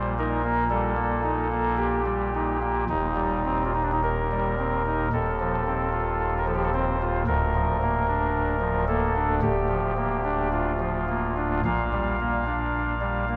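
A chamber organ with a soft reed voice sits up front on its own, its oboe stop lending a gentle, nasal color, with a touch of chiff at the start of each note and a trembling tremulant. This is a classical, chorale-style piece in Bb major, serene and reverent, moving at a slow 55 BPM in 4/4 with a flexible, rubato feel. In its chamber voicing, the organ spans a range from D1 to F5. The harmony passes from Eb/Bb through Cm/Eb and F7/Eb before settling on Bb/D at 7.3 seconds and closing on Gm7/Bb. A wet cathedral reverb with a 4.2-second decay surrounds the organ, giving the short passage, cut from a longer piece, a spacious, devotional atmosphere.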